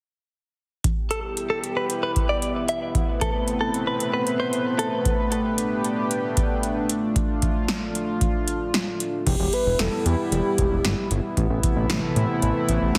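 A shimmering, retro pulse-width pad and an overdriven electro drum machine with a deep kick, punchy snare and metallic hats open this cool, driving synth-pop excerpt at 0.8 s, joined by a clean, picked, direct-recorded guitar whose brief second line carries spring reverb and delay, before a fat, detuned sawtooth bass with a filter sweep and a velvety, smooth synth lead with vibrato, chorus and delay arrive at 9.3 s over Em and Amadd9 chords, heard through a heavily compressed radio sound in a moderate digital room.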